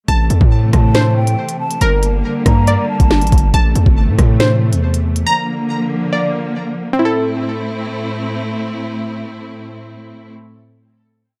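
Drill hip hop at 139 BPM with a half-time feel in A phrygian, ominous and cold, built on a dark production where lush bowed strings hold sustained chords under a crystalline, chorused and delayed wavetable pluck repeating a falling quarter-note arpeggio like a sampled loop. Up front, the drill kit drives with a knocking kick, sharp snare and crisp skipping hats with fast rolls, while a distorted, saturated 808-style bass pushes long sub notes with pitch slides that follow the kick, and both drop out at about 5.2 seconds. An airy, hollow flute adds a sparse, delayed counter-melody from 0.7 to 3.5 seconds, and the strings and pluck carry on alone into a final A minor chord from 7.0 seconds.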